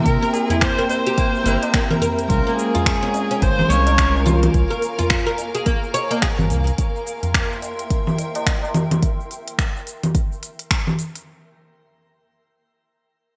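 The kamancheh, clean electric guitar, granular cloud pad and oud sound together from the start of this mystical, hypnotic organic downtempo excerpt. It sits in C phrygian dominant at 107 BPM in 4/4 with a 16th-note swing, over chords moving from C7 to Bbm7 and back to C7. The bowed kamancheh carries the melody with vibrato and portamento, rich yet distant, trailed by delay and shimmer reverb, while the woody, fretless oud plays arpeggios and the compressed, scooped electric guitar accompanies with subtle chorus, digital delay and a sidechain pump. Above them, a cloudy, blurred granular pad holds slow-attack chords that evolve until about 9.0 s, and a dark, sawtooth-and-square synth bass with a touch of ring modulation enters at 0.1 s. An up-front electronic kick and an electronic kit of congas, finger snaps, crisp hi-hat and shaker, tape-toned and given gated reverb, drive the groove until about 10.8 s and 11.2 s respectively, with a high-tuned tabla ringing briefly in the background. 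The whole has a bright 1980s-style digital sheen in a lush hall.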